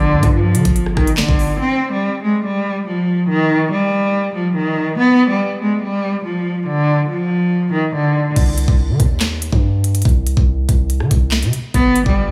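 A bowed cello carries the melody up front with vibrato, a focused tone and a smooth top, its tape echo trailing each phrase in this dark, tense drill excerpt at 142 BPM in a half-time 4/4 feel, set in C harmonic minor. A deep, long sine 808-style bass with a fast attack and mellow decay sounds from the start, and the electronic drum kit's knocking kick, sharp snare, crisp hats, handclaps, rim clicks and crash come in at 0.2 seconds. The drums drop out at 1.5 seconds and the bass at 1.6, leaving the cello alone until both return at 8.4 seconds under a Cm chord. Light reverb gives the produced mix a studio ambience.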